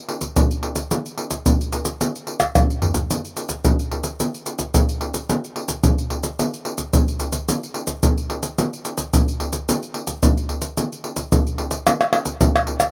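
A tight surdo drives this playful, sunny samba at 110 BPM in a straight 4/4 alongside pandeiro, maracas and tamborim, all played acoustically with soft hands and placed up front. A drum fill breaks in at 2.4 seconds, and the groove shifts into a short new section at 11.9 seconds before this passage, cut from a longer piece, ends. Recorded outdoors with little reverb, the percussion sounds dry and close.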